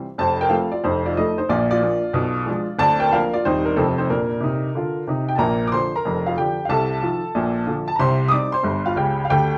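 A brisk swung 4/4 at 184 BPM drives this playful, exuberant stride jazz passage in Bb major, cut from a longer piece. A lone upright piano carries it from start to finish, its woody, slightly detuned tone sitting up front and ranging from deep bass notes to bright upper lines. A wet studio reverb gives the piano a lively, in-the-room feel, and the passage moves through a second section from 5.4 seconds.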